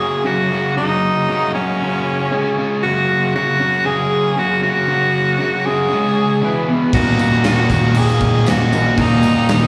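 A raspy, forceful tenor saxophone leads this brooding, gritty classic rock excerpt, its vibrato-laden solo line sitting up front with slapback echo and analog delay. Beneath it, a compressed distorted electric guitar plays a riff with slapback of its own, while a thick tonewheel organ with key click and slow rotary speaker holds very quiet sustained chords. At 6.9 s the band fills out: a fuzz-laden, punchy picked bass takes the low end, a sludgy overdriven second guitar adds its own riff very quietly, and a clean, reedy electric piano plays accompaniment in the background. A gated 80s drum kit enters at the same moment with a fat snare, kick and bright cymbals in an airy stone-room ambience, and a jingly tambourine joins at 7.2 s. The performance comes across as a live gig heard through the venue's PA, framed by recital-hall reverb.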